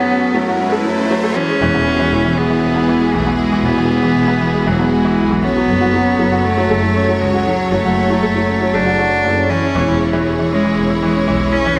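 A clear, focused cello carries the melody up front, its bowed tone touched with vibrato, a slightly boxy edge and a digital delay. This melancholic, hypnotic piano and strings electronica moves at 118 BPM in 4/4 with a straight feel, in F# minor. A felt-muted upright piano sits close beside it with a soft, mellow, intimate riff, thin felt dulling its attack and its own digital delay trailing behind. Around them, a rich studio string section holds lush, smooth sustained chords with even vibrato. The opening build-up pairs an electronic riser and swell that drop away at 1.4 seconds, and a distant chamber double bass section enters at 1.6 seconds with intense bowed lines and light vibrato. The harmony moves from F#m to Eadd9, back to F#m and on to C#m/E, all bathed in a huge ambient reverb in this passage cut from a longer piece.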